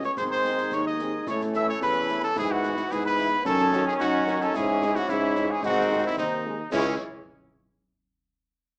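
A stern, martial wind-band march in a straight two-beat metre opens at once with the full ensemble: an airy flute section with vibrato, mellow woodwinds, a vintage-toned euphonium, a close-miked French horn section and a tuba whose light vibrato sits under a smooth top, all carried along by a close-sounding but backgrounded concert snare drum, dark clash cymbals and concert bass drum. At 0.1 seconds a solo cornet takes the melody up front, its warm, lightly vibrato-tinged classical tone standing clear of the rest. A clear-sounding trombone section joins at 0.2 seconds with sustained chords, while the flutes, woodwinds, euphonium and horns stay in the background with supporting lines and accompaniment. The harmony moves through G#, A, E/G#, F#m6 and C#m/G# before settling on C#m as a brief closing section begins at 6.7 seconds. The recording has a roomy, reverberant studio sound heard through a small-speaker character, and this short excerpt is cut from a longer piece.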